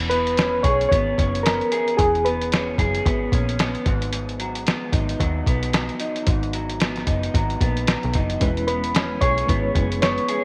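Over a swung 112 BPM groove from an up-front, sampler-style drum kit with a thumpy kick and fat snare, this hazy, laid-back indie bedroom-pop excerpt in E lydian moves from E6 to G#m7 and back, with a dark, round, foam-muted dub bass given tube saturation, a slightly broken-up electric guitar through a small old amp shimmering with subtle chorus and vibrato, and soft, mellow synth keys carrying the melody with tremolo, lush chorus and slapback echo from 0.1 to 2.7 seconds and again near the end, while a reedy, worn, slightly out-of-tune electric piano with fast tremolo joins at 8.4 seconds, all in light reverb.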